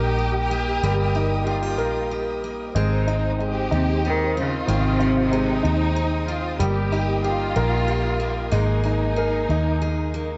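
A round, punchy muted electric bass sits up front in this tender, heartfelt six-eight pop ballad excerpt in Ab major at 62 BPM, under a clear, polished baby grand piano, bright picked dreadnought acoustic guitar arpeggios touched with digital delay, a lush string section holding sustained chords, and a distant violin section gliding through an expressive second line, while a woody, distant bowed cello carries the melody with vibrato and delay from 3.7 to 6.3 seconds, all in a small room with light reverb and the worn, warbling pitch drift of old cassette tape.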